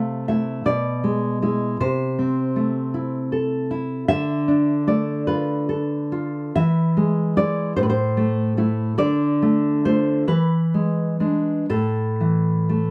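Melancholic and wistful, this short fragment of a romantic classical guitar piece unfolds in 6/8 with a free, rubato feel. A solo nylon-string guitar plays throughout, its fresh strings sounding warm and thumb-plucked, up front in a moderate studio reverb, ranging from A2 up to F5. The harmony drifts through minor-key chords such as Am, Bm7b5 and Dm, leaning on E before settling onto an A5 near 11.7 seconds, where the cut from the longer work comes to rest.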